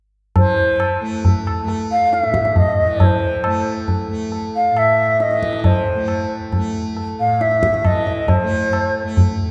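Introspective and full of longing, this short excerpt of Hindustani classical music moves at 136 BPM in a straight 3/4, set in raga todi on A, with tuning a touch above standard pitch at A4 = 441 Hz. The bansuri carries the melody up front, its pure bamboo tone colored by vibrato and tongued notes as it moves between C5 and F5. Beneath it, the tanpura holds a drone from A2 to A3, softly plucked yet bright, with a buzzing, shimmering resonance sitting lower in the mix. The tabla, also up front, is low-tuned with a short ring and a small-room closeness. All three parts begin together at 0.4 seconds, and the tanpura sustains until 9.5 seconds, while the whole is wrapped in a wet concert hall reverb that lends the recording the spacious air of a church or hall.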